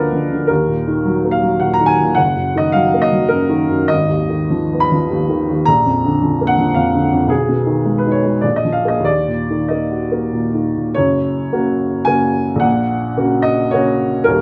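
Passionate and stormy, this romantic character piece for solo piano unfolds in 3/4 with a rubato feel, its tempo moving between 90 and 113 BPM. A single upright piano carries everything, its tone woody and natural with a long sustain, placed up front and ranging from D#1 up to Cb6. The opening passage sits in Eb minor, moving through Ebm/Gb, Fm7b5/Ab and Bb before Abm/Cb and a bare Bb5 lead back to Ebm. At 11.0 s the music shifts to F# major, settling on F# and then F#/A# until it breaks off at 14.4 s, having been taken from a longer work. Light reverb and a dark, warm production give the instrument an intimate, shadowed presence.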